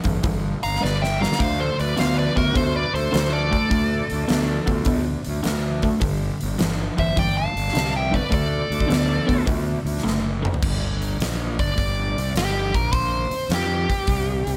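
A huge arena drum kit with a fat snare, punchy kick and bright cymbals opens this raunchy, gritty blues rock and southern rock excerpt at 104 BPM, swung in G mixolydian, alongside a crunchy, double-tracked overdriven guitar riff on G5 and D5 chords and a round, fuzzed bass up front. From 0.6 s a nasal lead guitar with a parked wah carries the melody while a dark, smooth lead adds a quieter second line until 9.4 s. After a drum fill, the riff guitar stops at 10.6 s and the wah lead takes a solo over G5 and C5, with the drums sounding airy and polished in a hall.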